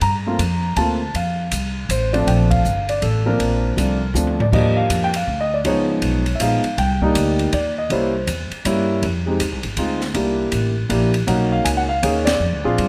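Lightly reverberant, this relaxed and playful jazz piano trio swings in 3/4 at 160 BPM in Bb major, with an up-front, long-sustaining baby grand carrying the melody over woody pizzicato upright bass and an open kit of dark cymbals, high-tuned snare and boomy kick, the band hitting accents at 2.5 and 12.2 seconds and a drum fill at 4.1 seconds leading into a new section of rich extended chords.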